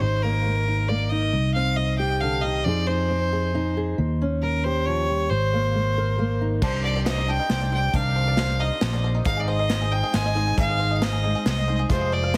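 A clear, earthy fiddle with light vibrato opens this excerpt, carrying a bittersweet, wistful melody over a boxy fingerpicked ladder-braced acoustic guitar with old strings and a round, up-front fingered electric bass. The indie folk piece moves at 136 BPM in a straight 3/4, its harmony drifting through Absus2, Cmadd9, Fm7, Eb7 and Abadd9. At 6.6 seconds the arrangement builds. The fingerpicked guitar drops out, and a woody picked steel-string acoustic guitar enters alongside a bright, twangy banjo played with fingerpicks in arpeggios and an unplugged drum kit with dark cymbals, a tight kick and bundle sticks. The fiddle and banjo both carry analog delay, and the fiddle and bass stay up front until the cut at 12.4 seconds. The whole mix sits in light reverb with a heavily compressed, radio-like sound.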